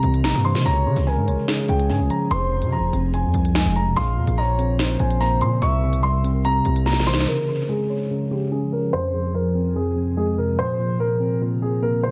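Cold and menacing, this half-time drill excerpt moves at 145 BPM in F harmonic minor, its harmony circling C7, Db, Fm and Bbmadd9 in a light, echo-heavy mix. A dark, boxy concert grand carries the melody up front, its action noise audible and its tone dulled by a low-pass filter and tape echo, while a clean tine electric piano fills in the accompaniment beneath it, also filtered and echoed. A very quiet, ethereal pad with a slow attack, detuned unison and ensemble chorus holds sustained chords throughout. Through the first 7.3 seconds, a saturated, aggressive 808-style bass and a drill kit with a sharp snare and crisp hats, re-recorded in a large room and touched with tape echo, drive the groove, joined from 0.4 seconds by a smooth gliding lead with vibrato and portamento as a second line. A drum fill at 6.9 seconds closes that stretch, after which the drums, bass and lead drop out and a filter sweep runs under the two pianos and pad to the end at 12.1 seconds.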